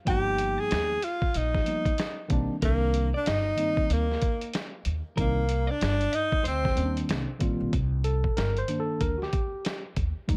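Jazz-hop in C minor at 94 BPM, this mellow, smoky excerpt rides a swung 4/4 groove with a dark, warm production and digital ambience. A lo-fi sampler-style drum kit sits up front, compressed and pitched down, with a muffled, thumpy kick, a medium-tuned snare and hi-hat carrying a tape-warm, small-room character. Pizzicato upright bass adds a woody, acoustic low end on steel strings, while a worn, slightly out-of-tune tine electric piano plays clean accompaniment through its built-in speakers over a G7alt moving to Cm7. Up front, a tenor saxophone carries the melody in jazz style with vibrato, soft attacks and scooped notes, joined in the background by a picked, compressed clean electric guitar on a second line. Both the sax and guitar stop around 7 seconds, and from 7.7 seconds the electric piano takes a solo over the bass and drums through to 10.4 seconds.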